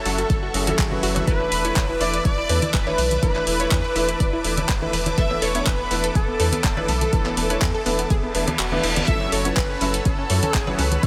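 A dreamy mix soaked in a huge ambient reverb gives this progressive house excerpt its driving yet bittersweet character, moving in a straight four-four pulse over F#m7 and E7sus4 chords. A thick, bold sawtooth unison lead carries the melody with vibrato, analog chorus, tape echo and sidechain pumping, and a very quiet, expressive bowed violin section traces a second line in the same register. Underneath, an evolving filtered supersaw swell holds phased sustained chords in the background, a lush, punchy pluck spins arpeggios through tape echo, and a grand piano adds chorused stabs. A round, dark analog bass anchors the low end, while a tape-warmed deep house kit of handclaps and hi-hat and an up-front, layered electronic kick drive the groove, with bright congas and cowbell played by soft hands sitting further back. A reverse cymbal enters at 8.3 s, and the kick drops out from 8.6 s until the return to F#m7 at 9.1 s.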